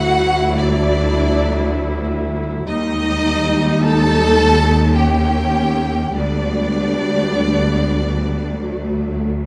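From the first moment, a full string orchestra plays this tender, lyrical fragment of a slow romantic movement in G major, set in 3/4 at 47-60 BPM with a rubato feel: a rich, lush first-violin section carries the expressive vibrato melody high above a warm, soft-attacked, more distant second-violin line, focused violas fill in the accompaniment, and a bright cello section sits in the background beside a smooth, even double bass on the low bass line, all under light reverb and a dark, warm production, with the violins stopping at 9.2 seconds as the lower strings carry on to 9.5 seconds.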